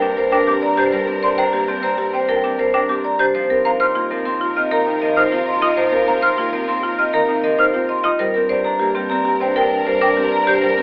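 In a straight 4/4 pulse, this meditative, hypnotic slice of minimalist classical pattern music, cut from a longer piece, sets a bright, ringing vibraphone melody up front over woody marimba arpeggios and a hollow, pure flute tracing its own arpeggios from 0.3 s, while a fingerpicked Celtic harp, smooth bowed strings holding sustained chords and a distant bowed double bass with expressive portamento sit beneath, the whole mix filtered to a telephone-like sound inside a large studio reverb.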